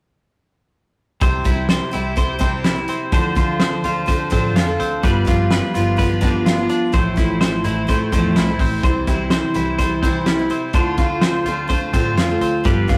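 A twangy, compressed twelve-string electric guitar sits up front, picking clean, bright arpeggios over a jangly indie pop groove in C major at 126 BPM in a straight 4/4. Alongside it, a jumbo twelve-string acoustic guitar picks full-bodied, octave-doubled accompaniment with a shimmering sparkle, while a vintage foam-muted fingered bass adds a dark, round, amped bottom end. The loose indie drum kit, also up front, brings a fat snare, a punchy kick and hi-hat, with a pumping room sound around it. The band enters together at 1.2 seconds and plays through to 13.0 seconds, cycling C, Dm7, G7 and Fmaj7/A in a youthful, bright mood, tuned slightly flat to A4 = 436 Hz. A moderate stone-room reverb and the rough, saturated feel of a rehearsal-room recording give this fragment of a longer piece its lived-in character.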